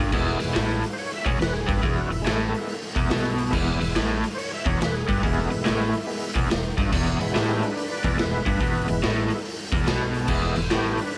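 A thick, overdriven tonewheel organ takes the solo spotlight throughout this 11-second cut from a longer piece, holding sustained chords between G#3 and E5 through a slow rotary speaker and chorus vibrato. It's a swaggering, raunchy slice of blues rock power trio and southern rock in E major, moving at 142 BPM in 4/4 with a swung eighth-note feel. Up front, a double-tracked, picked electric guitar growls out a low riff between E2 and B2, its overdrive colored by tremolo. Underneath, a pizzicato upright bass with steel strings adds a woody, growly bottom. The raw garage drum kit hits with a punchy kick, a medium-tuned snare, hi-hat and crash cymbal, its saturated, gritty sound sitting in a bright, pumping stone room with a rolled-off top. A light reverb rounds out the sound.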